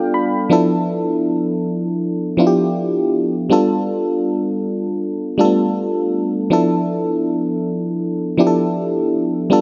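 In a straight, unhurried 4/4, this sensual, late-night R&B fragment opens with a brief fill on a solo FM electric piano before it settles into an alternation of G9 and Dm69 chords. The vintage piano sits up front with a glassy, bell-like attack that decays over a noise layer, and chorus gives it a warbling shimmer. Light reverb surrounds it through this short cut from a longer piece.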